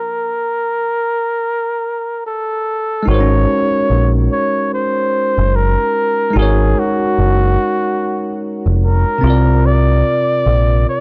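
A breathy flugelhorn carries a dreamy, mellow lo-fi hip hop melody, its jazz-style solo lines marked by vibrato, scooped notes and a smooth, filtered top, and it plays alone for the first 3.0 seconds of this excerpt. A bright, bell-like tine electric piano then enters with clean, low-passed accompaniment, joined at 3.1 seconds by a round, dark picked dub bass with tube saturation. The swung sixteenths sit in a small room with light reverb, and the dry, gritty hardware sound is coloured by transformer saturation.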